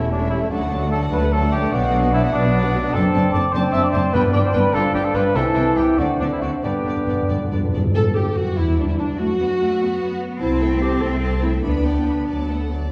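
Heard from further back in a reverberant recital hall, this spirited, graceful classical-period orchestral movement in G major moves in a rubato 6/8 at 89-101 BPM. A lush violin section carries the melody while a second violin section, a mellow clarinet, a cor anglais and a hollow flute section weave second lines. A bassoon and an expressive viola section supply accompaniment, and a French horn section holds sustained chords. Cello and up-front double bass sections anchor the bass, and articulate hard-mallet timpani enter at 4.1 s with a fill at 6.6 s.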